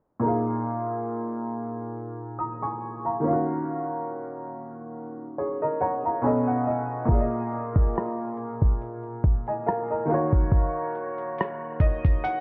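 Melancholic and hazy, this lo-fi hip hop fragment at 70 BPM sways on a lightly swung 16th-note feel, carried by a bright, woody and slightly detuned upright piano playing cassette-worn chords such as Bb7sus4 and Ebm7 beneath a filter sweep and vinyl crackle, slipping in a fill at 5.4 seconds before a gritty, compressed sampler-style soul kit of thumpy kick, hi-hat and rim click arrives up front at 7.1 seconds, the whole piece wrapped in a dark, low-passed production with light reverb.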